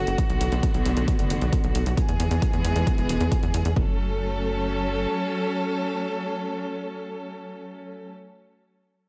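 An excerpt of uplifting trance opens with a rich chamber string section holding sustained bowed chords, its focused ensemble tone carrying vibrato and pulsing with sidechain pumping, beside a tight sequencer bass built from sawtooth and square waves with a fast-attack filter pluck, tube saturation and the same pumping. A punchy analog kick and a layered electronic hi-hat join almost at once, both set in studio reverb, giving the straight 4/4 feel a driving push. The mood is bittersweet yet propulsive, moving through Bm7 and E before settling on F#m. The drums drop out near 3.9 seconds and the bass by 5.1 seconds, leaving the strings alone until 8.1 seconds. Strings and bass sit up front in a lightly reverberant mix.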